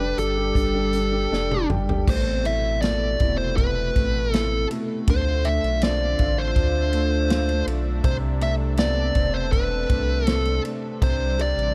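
A straight 4/4 pulse at 80 BPM carries this melancholic, heartbroken pop ballad in A minor, with a natural, acoustic drum kit entering at 0.2 s, built on a punchy kick, a medium-tuned snare, hi-hat, ride and crash cymbals and toms. Up front, a dark, compressed fuzz lead guitar sings the picked melody between A4 and E5, its distortion trailed by a digital delay. Underneath, a smooth vintage grand piano with long sustain plays the accompaniment, while a lush, detuned unison pad holds thick, bright sustained chords with chorus, and a deep sine-and-triangle sub bass with an added octave anchors the low end. Near the start the piano and then the drums play fills over Gsus2 that lead at 2.1 s into a longer passage, where the harmony moves from Amadd9 through Dm7 and back to Amadd9 before arriving on C. The whole production is dark and warm, wrapped in studio reverb, and the clip is cut from a longer piece.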